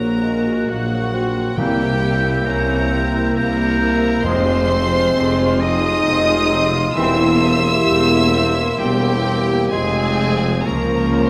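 Elegiac and melancholic, this slow romantic orchestral movement in F minor unfolds at 66 BPM in 3/4 with a flexible, rubato feel, heard as a brief section cut from a longer piece. A close, expressive violin section carries the melody with rich vibrato, joined by a bright solo clarinet, a pure, mellow flute with crisp attack, and a smoother second violin section in the background. Beneath them, violas and a warm solo bassoon supply the accompaniment while a close-miked French horn section holds sustained chords, and a very quiet, thumb-plucked harp rings out arpeggios. The low end rests on bowed cellos and focused double basses, with a distant, roomy tuba adding depth. At 1.6 s a clear, vintage-toned trombone section adds sustained chords and round, soft-mallet timpani enter, the drums falling silent at 5.6 s. The harmony moves through Gb/Bb, C7, Fm and C7/E before settling toward Bbm/Db, all set in a wet scoring-stage reverb.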